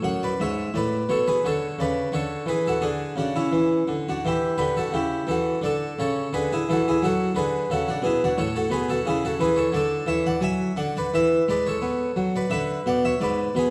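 Radiant and serene, this baroque-style suite movement for solo harpsichord unfolds at 87 BPM in 4/4 with a flexible, rubato feel, settling into A major from 8.4 seconds. The French-style harpsichord is close-miked and up front, its plucked tone full and brilliant with the added shimmer of octave strings, spanning from F#2 up to G#5. The harmony moves from F#m through E13/C# and A13 to D, then passes through A, D and E before closing on G#m7b5 at 12.5 seconds. While the instrument itself sounds dry and immediate, a recital hall reverb with a 1.4-second decay surrounds it, and the overall production leans dark and warm. This brief passage is cut from a longer piece, ending at 13.7 seconds.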